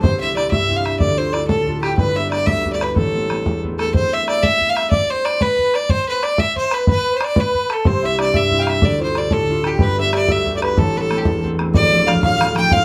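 Spirited, dark and lively, this Celtic folk jig in A minor moves at 123 BPM in 6/8. An up-front, clear fiddle carries the melody with light vibrato and an earthy bowed tone, while a reedy, mellow accordion with dry tuning sits in the background as a second line. A bright, ringing, fingerpicked concert harp plays the accompaniment up front, and a boomy, saturated bodhran supplies the percussion, with the band playing live together in one room under moderate studio reverb in this cut from a longer piece.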